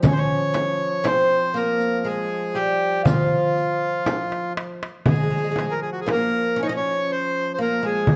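This soulful, longing excerpt from an Arabic maqam ensemble opens with a woody, plectrum-plucked oud, a mellow duduk holding a low F drone with vibrato and scooped notes, and the bright, small sound of a frame drum, all moving at 120 BPM in eighths across a straight 10/8 in F minor. A reedy, mid-forward accordion carries the melody up front from 0.1 seconds, joined by a crisp, high metal-shell darbuka recorded close and dry. The fretless, double-strung oud traces a second line beneath the accordion, while a riq with bright jingles sits in the background until 4.3 seconds. A drum fill from 4.1 to 5.1 seconds leads into a second section that runs to the end. The production is dark, set in a moderate recital hall reverb that lends the ensemble a sense of space.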